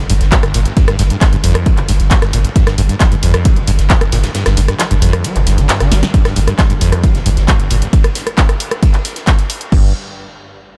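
This intense, industrial peak-time techno excerpt in G minor at 134 BPM opens on a squelchy, resonant sawtooth acid bass riff with subtle chorus and analog delay and a thick, saturated sub bass holding G1. They are joined by a punchy analog drum machine of crash, handclaps, hi-hat, rim click and snare and a loose acoustic kit with dark ride and fat snare sitting in the background, and then by an up-front, tape-warm electronic kick. Both basses, the hats and the cymbals pump to the sidechain in a small, lightly reverberant room until the kick drops out from 4.3 to 6.1 seconds around a drum fill at 5.9 seconds.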